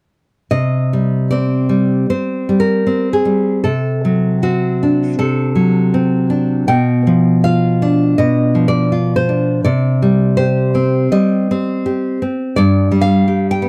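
In a free, rubato 4/4, this romantic piece for solo classical guitar unfolds with a wistful, intimate mood, a short excerpt cut from a longer work. The fingerpicked nylon-string guitar sits up front with a bright, acoustic tone, moving from Cm through D7/C and G7/B back to Cm before settling on G7(no3) at 12.6 seconds. Light reverb and a dark, warm production give the sound a close-up character.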